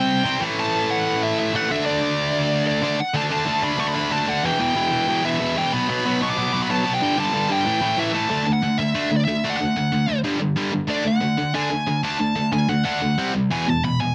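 A dense, heavily limited modern master with light reverb carries this energetic, upbeat punk cut in D major at 186 BPM, where a bright, double-tracked overdriven electric guitar drives the picked riff up front while a dark, bluesy lead guitar with distortion plays the melody above it for the full 14.1 seconds.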